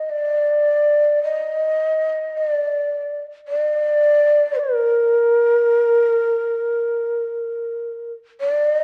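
Unhurried and rubato at around 54 BPM in 4/4, this calm, austere fragment of Japanese traditional music, cut from a longer piece, features a solo end-blown bamboo shakuhachi, breathy and hollow with a tongued chiff and rolled-off highs, placed up front and ranging from Bb4 to Eb5 over 8.8 seconds, bathed in a 1.8-second recital hall reverb and colored by the warbling pitch drift of worn cassette tape, tuned to A4 = 441 Hz.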